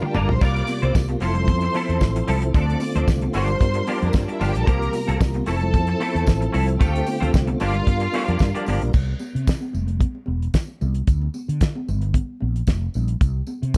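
A straight 4/4 disco groove at 113 BPM drives this glamorous, cut-from-longer-piece clip in G dorian, launched by a drum fill from a damped 70s kit with a fat snare, tight kick and dark cymbals, up front beside a round, punchy fretless bass with analog chorus, while bright, thin-skinned congas and a jingly tambourine sit in the background. Over a cycling C7sus4, Fmaj7, Dm7, Gm7 progression, a lush, bowed string section carries a second line, a bright, clean semi-hollow guitar with ensemble chorus plays picked accompaniment, and a mellow tonewheel organ holds sustained chords with key click and fast rotary speaker. By 8.9 s the strings, guitar and organ have dropped out, leaving drums, bass and percussion to push through sparse F5 and Gm7 chords in a dark, small-room production.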